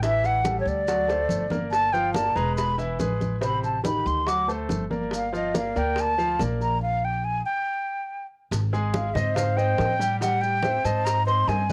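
A home cassette recording in a snug booth carries this fiery, driving Afro-Cuban jazz piece in G minor at 141 BPM, where a breathy, hollow silver concert flute with vibrato and a tape-tinged tone sings the melody up front over a clear grand piano with audible action noise, a woody pizzicato upright bass, ringing congas, tight high-tuned bongos and grainy maracas, with a drum fill at 1.1 seconds and a stop from 6.8 to 8.5 seconds before the harmony moves to Abmaj7.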